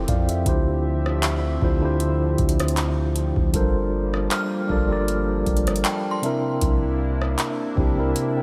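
Light reverb and digital ambience frame this moody, late-night contemporary R&B excerpt at 78 BPM in D minor. Over a Dm11 to Gm11 to C9 progression, a mellow, clean tine electric piano sits up front with fills at the start and around 5.5 s, while a shimmering, retro chorused pulse-width pad holds sustained chords. A long, decaying, sine-toned 808-style bass rings underneath, and a booming analog drum machine with a deep kick, metallic hi-hats, handclaps and rim click carries a light 16th-note swing. At 4.3 s an inharmonic FM synth chime with tremolo and digital delay rings in.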